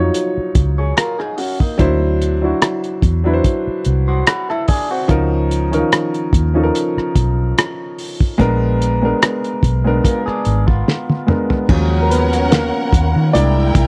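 An intimate grand piano with audible action noise carries the accompaniment in this bittersweet, silky slice of lush 1970s-style soul at a relaxed 73 BPM, set over a round, foam-muted electric bass and a muffled, cloth-damped drum kit with a fat snare and dark cymbals, while a twangy, slightly broken-up electric guitar riff runs from 0.8 to 11.7 seconds, giving way after a drum fill to a piano solo as a distant string section with expressive vibrato joins in the dry, close sound of a small studio.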